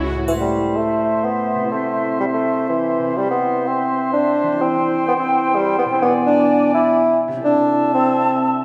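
An up-front, warm bassoon carries the accompaniment in this playful, whimsical film cue in A minor, moving at 126 BPM in a straight 3/4 with a magical, mischievous air. Mellow, ringing fingerpicked harp arpeggios open the passage alone at 0.0 s. A dark, soft-attacked clarinet, a pure, hollow flute with vibrato and a distant, roomy oboe then join on second lines at 0.3 s, while a triangle sits in the background until 1.2 s. A wet scoring-stage reverb surrounds this short fragment as the harmony moves from A minor through C to E7 over B and returns to A minor over C.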